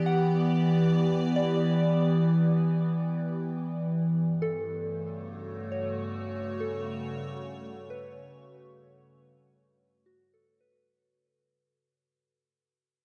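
Weightless and warm, this ambient fragment at 69 BPM sets an evolving, morphing wavetable pad holding bright, up-front sustained chords from G6 to F#m/G with chorus, phaser and its own reverb, while a soft, pure FM synth bell traces gentle arpeggios through chorus and diffuse ambient delay, all bathed in a dark cathedral reverb as the whole piece fades out from 1.7 seconds to 10.9 seconds.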